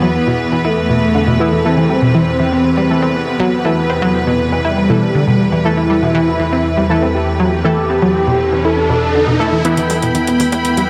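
Melodic techno at 120 BPM, hypnotic and melancholic, where a thick, detuned unison lead with vibrato and tape echo sings over clear symphonic strings, a nasal analog pluck arpeggio with phaser, filtered brassy stabs and a tense bowed-like drone on E2, moving from E5 to Am7/E before a riser from 7.3 seconds builds into an Em lift at 9.6 seconds, where overdriven metallic hi-hats and a very quiet, tight sequencer bass join inside an echo-heavy spring-reverb mix.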